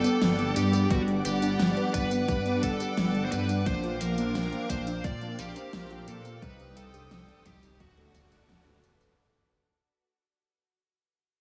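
Synthwave with an uplifting, nostalgic mood, this brief cut from a longer piece fades out throughout as a dark, smooth overdriven lead guitar carries the melody through tape echo, slapback and shimmer reverb over a lush, thick unison pad with sidechain pumping. A warbly, dusty lo-fi pluck spins arpeggios and a mellow, round synth brass adds stabs, both sitting in the background with chorus, while a deep, rumbling detuned saw bass anchors the low end. A pop drum kit with fat snare, metallic hats and tambourine plays throughout, joined by a punchy overdriven electronic kick from 0.9 to 8.3 seconds, all set in a big arena-like hall reverb as the chords move from G through Bbadd9 and Cm to D.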